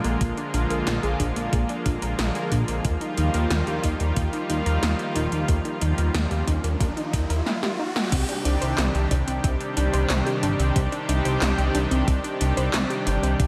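A bright, warbling unison pad carries this moody, nocturnal synthwave excerpt, its detuned sawtooth chords pumping against the sidechain and trailing into shimmer reverb while a glossy, chorused synth bass sits up front with a moving filter sweep. A punchy unison pluck plays arpeggios through analog delay in the background, over a thumpy, overdriven electronic kick and tape-toned 80s drums with a gated snare, metallic hats and handclaps. A riser builds from 5.6 s, a drum fill leads into a band accent near 8.0 s, and the dreamy, reverb-soaked mix moves into a new section at 8.1 s.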